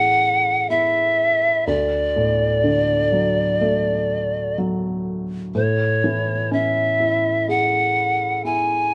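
A breathy bamboo pan flute with gentle chiff and vibrato carries a tender, emotional pop melody from the very first second over a mellow, intimate, felt-muted upright piano moving through Amaj7 and D. Both sit up front in a moderate stone-room reverb that gives this short live-in-one-room excerpt of a longer piece its soft glow.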